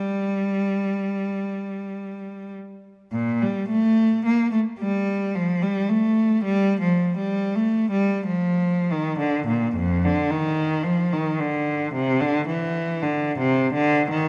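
A single bowed cello, clear and focused with vibrato and placed up front, carries this dance-like, radiant baroque-style suite movement alone from 0.0 to 14.3 s, moving between F2 and Bb3 at a rubato 55 BPM in 3/4 with tuning at A4 = 442 Hz, its opening phrase returning at 3.1 s amid a moderate concert-hall reverb in this fragment cut from a longer piece.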